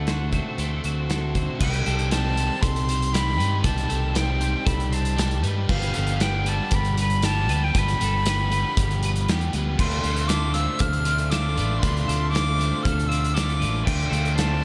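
A dreamy, reverb-soaked mix with a moderate plate reverb sets a hazy, wistful tone for this excerpt of shoegaze-leaning dream pop rock, moving at 117 BPM in a straight 4/4. A breathy, reedy jazz flute carries the melody high above the band, its tongued notes and vibrato trailed by analog delay. Underneath, a bright, twangy twelve-string electric guitar plays clean, compressed arpeggios in the background through ensemble chorus and analog delay, while an overdriven electric guitar drenched in lush chorus holds a picked riff throughout. A second guitar at the edge of break-up adds a slightly broken-up riff with reverse reverb, heard at the start and returning from 9.8 s. A round, punchy fingered bass sits up front beside a loose indie drum kit with a punchy kick, dark cymbals and a pumping room sound, as the harmony moves through D7, Cm6, G7 and Dm7.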